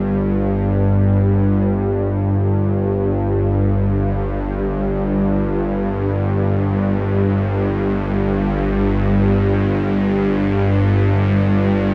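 Vast and ominous, this ambient fragment in free time, cut from a longer piece and tuned to A4 = 441 Hz, is a solo bowed-like drone from 0.0 to 11.9 s, ranging G1 to G2, whose bright, tense, string-like sawtooth tone blends detuned unison voices with a noise layer, a slow attack, long sustain and release, vibrato and built-in reverb, set up front within a huge, wet ambient space with an 8.3-second reverb tail.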